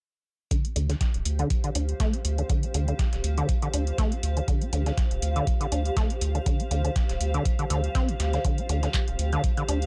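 A dry, gritty hardware recording with light reverb carries this hypnotic, trippy acid house excerpt at 121 BPM in D minor, where a squelchy, resonant sawtooth acid riff under a filter sweep, treated with overdrive, analog chorus, cassette tape and sidechain pumping, rides over a deep, up-front electronic kick, a booming analog drum machine with handclaps and metallic hats, a dusty, high-passed soul sampler-style kit with hi-hat and medium-tuned snare, a round, dark analog bass with tube saturation entering at 0.8 seconds, and a cloudy, blurred granular pad drifting in at 1.3 seconds, all on a single Dm chord with a 55% sixteenth-note swing.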